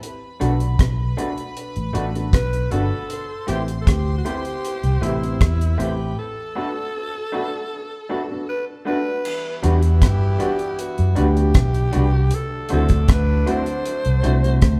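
A soft-attacked, floating string section and a dry reggae drum kit open this slow lovers rock passage at 78 BPM. The drums sit up front with a tight kick, hi-hat, rim clicks and crash cymbal. A dark, round, foam-muted electric bass soon joins them near the front of the mix, while an intimate baby grand piano with audible action noise and long sustain plays accompaniment through a dub echo, and a slightly broken-up, lo-fi guitar through a small old amp adds compressed, picked stabs. From 2.3 s a raspy, gritty alto saxophone carries the melody with bright vibrato, giving the smooth groove a sense of longing over chords that move from Bm7 to Am7, with a break arriving at 6.2 s. At 9.2 s the strings give way to a punchy, tight horn section doubled in octaves, set in the background with light vibrato, as the harmony turns to Em9 and then D7. The band sounds as if it is playing live together in one room, with a moderate large studio reverb, and the passage is cut from a longer piece.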